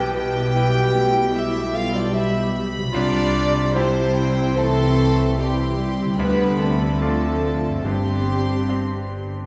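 A wet recital hall reverb sets the orchestra further back in the room, giving this short cut from a longer cinematic film score a sorrowful, moving character. At 74 BPM in 4/4 with a rubato feel, a floating, sul tasto violin section carries the melody between G5 and C6, while a second violin section, an airy, hollow flute and a classical-style clarinet weave second lines beneath it. A bright, polished grand piano accompanies from the background alongside a dark, woody viola section with lush vibrato, and a distant, roomy French horn section holds mellow sustained chords. A very quiet, ringing harp adds fingerpicked arpeggios, and cello and double bass sections anchor the bass with a pure, soft-attack tone. The harmony moves from Em/B through C and Dm to Gsus4 at 7.9 s, leaving the phrase suspended as the piano and harp carry on to 9.5 s.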